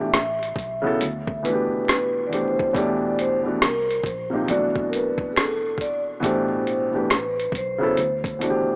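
Hazy and reflective, this brief lo-fi hip hop excerpt drifts at 69 BPM with a loose sixteenth-note swing, its chords moving from Aadd9 through Em9, Cm7 and Bm7 before settling on D13sus4. A ringing, metallic vibraphone with slow motor vibrato carries the melody through a low-pass filter and analog delay, while a soft, felt-muted upright piano sits up front with cassette tape colour, a dark, round, foam-muted electric bass hums underneath, and a compressed, pitched-down sampler kit thumps with kick, hi-hat and rim click alongside a very quiet finger snap. Worn, warbling tape, vinyl crackle, pitch drift and a small-speaker sound give the whole mix a dusty, intimate haze under light reverb.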